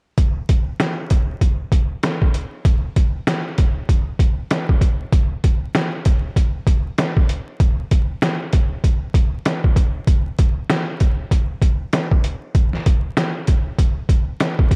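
Tough and moody, this hip hop fragment cut from a longer piece rides a 97 BPM groove in 4/4 with a 59% swing on the 16ths, built on a sampler-style trip hop drum kit of hi-hat, thumpy kick and medium-tuned snare that sounds compressed, pitched down and gritty, re-recorded in a small room and placed up front with little reverb under a layer of vinyl crackle, running from 0.2 to 14.8 seconds and moving into a new section at 5.1 seconds.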